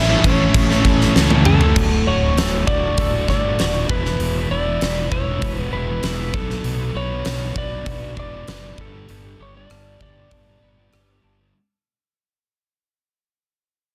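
A dense, heavily limited modern master with light reverb carries this cathartic, anthemic stretch of quiet-loud alternative rock, cut from a longer piece and moving at 98 BPM in a straight 4/4 in D major. A huge arena drum kit sits up front with a fat snare and punchy kick, working crash, hi-hat, rim clicks and toms, and a drum fill at 1.2 seconds marks the turn into the second section. Underneath, a warm, overdriven fuzz bass played with the fingers holds the low end while a dark, thick fuzz guitar grinds out the riff throughout. At the start, a bright, compressed fuzz guitar in the background and a very quiet, double-tracked overdriven electric guitar add their own riffs, both dropping away by the time the twelve-string electric guitar enters at 1.8 seconds with clean, twangy arpeggios under subtle chorus and plate reverb. Over it all, a dark, slightly broken-up lead guitar carries the melody with slapback echo and plate reverb as the chords move from A through D, E and Bm to Gadd9, and the whole passage fades out from 1.8 seconds on.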